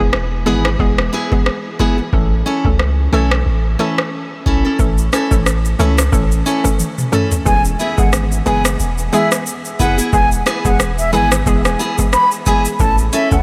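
A dreamy, reverb-soaked mix opens this sunny, bouncy dancehall excerpt at 90 BPM in E major, where a booming, overdriven analog drum machine with deep kick and metallic hats sits up front over a punchy sine sub bass, a hollow, detuned square pluck pumps with chorus, a full-bodied picked steel-string acoustic guitar arpeggiates from 0.5 seconds, and after a drum fill a bright, airy baroque flute carries the melody with delay from 7.5 seconds.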